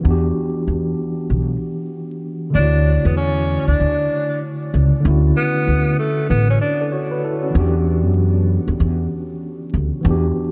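Soulful and nostalgic, this short boom-bap hip-hop clip rides a swung groove cut from a longer piece. A mellow tine electric piano carries the accompaniment throughout, its clean tone colored by cassette tape and sitting up front, moving from Em7 to Dmaj7 at 2.5 seconds and back to Em7 at 7.5 seconds. Underneath, a woody, growly upright bass plucks dark, thumpy low notes that sit prominently in the mix. From 2.6 to 6.9 seconds a breathy tenor saxophone takes an intimate, jazz-style solo in a whispered subtone, with vibrato, soft attacks and scooped notes, heard distant and roomy through an analog delay. Light reverb, small room ambience and vinyl crackle frame the recording.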